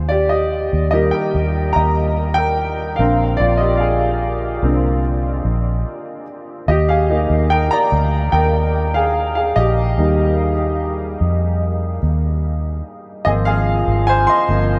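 A clear grand piano leads this emotional, hopeful pop ballad, playing intimate, polished solo lines with long sustain and audible action noise, its tone dressed in a lush chorus. The tempo is a slow, straight 73 BPM in 4/4, in Eb major, tuned slightly low with A at 437 Hz. Beneath it, a vintage muted fingered electric bass sits up front with a dark, round, punchy, foam-muted character. The harmony moves from Eb to Bbadd9, pauses for a short break from 5.9 to 6.7 seconds, then returns to Eb for a second passage before settling on Ab6 at 13.3 seconds. A huge ambient reverb with a long tail soaks the mix in a dreamy haze, giving this short cut from a longer piece a spacious feel.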